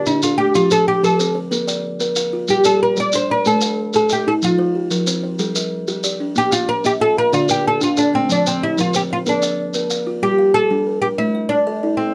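A rolling 12/8 pulse in straight time drives this hypnotic, southern African traditional mbira-style interlocking cycle, where a hollow, boxy kalimba and a soft, buzzing kalimba with an airy edge weave short plucked arpeggios alongside grainy maracas that drop away at 10.1 seconds. Up front, a woody, plectrum-plucked fretless oud with double strings carries the melody over a circling progression that moves from Dm through F, Bb and Gm. The close, detailed sound carries little reverb, and the passage is cut from a longer piece.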